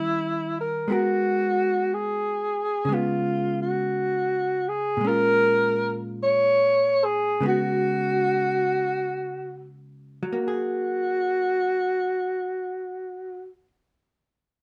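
From the first moment, a breathy alto saxophone with vibrato and scooped notes and a dark, clean, picked hollow-body electric guitar that sounds compressed sound together in this intimate, late-night jazz ballad in F# major, with the saxophone carrying the melody up front over the guitar. The swung 4/4 pulse sits between 37 and 61 BPM and slows from 0.9 to 10.3 seconds, moving through G#m9, C#7sus4 and A#m7 before settling on F#add9 at 10.3 seconds. Light reverb gives the fragment a roomy glow.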